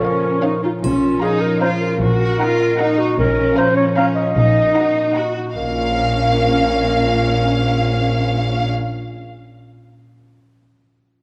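Quirky and sneaky, this short, playful film cue in Bb minor moves at 152 BPM in a straight 3/4, trading between Bb minor and Eb minor over a Bb bass. A lush violin section carries the melody high, while a second, smoother violin section and an expressive viola section with portamento sit in the background, and a warm clarinet stands out as the loudest of the second lines. A hollow, airy flute and a dark bassoon sound only in the opening moment, up to 0.6 seconds, before the clear, focused cello section and the close double bass section enter at 0.8 seconds to anchor the low end. A ringing, fingerpicked concert harp plays arpeggios throughout and is the last to stop at 9.5 seconds, and a dry triangle adds a faint touch in the background as the cellos come in. The whole cue sits in a moderate scoring stage reverb and carries a worn, warbling cassette-tape character with pitch drift, giving the orchestral whimsy a slightly wobbly, old-fashioned tint.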